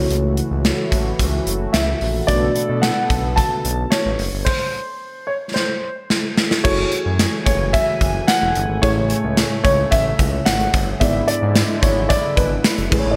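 This uplifting, nostalgic 1980s-style pop excerpt opens with a mellow FM electric piano, a shimmering chorused pulse-width pad and a smooth synth bass sounding together, joined a moment later by a punchy gated drum kit set up front in a bright stone room. The electric piano sits in the background with a round, soft tone coloured by chorus and tremolo, while the pad holds sustained chords with a detuned, retro sheen and the sawtooth-and-triangle bass stays smooth and sustained underneath. At 1.7 seconds a dark concert grand piano enters with the melody in a mellow upper register, its sound lush with chorus and delay. The harmony moves through minor seventh chords, and a drum fill from 5.6 seconds leads into a second section built on richer major seventh and dominant colours. The bright digital production places the ensemble in a lush hall reverb, giving the piece a glossy, spacious feel.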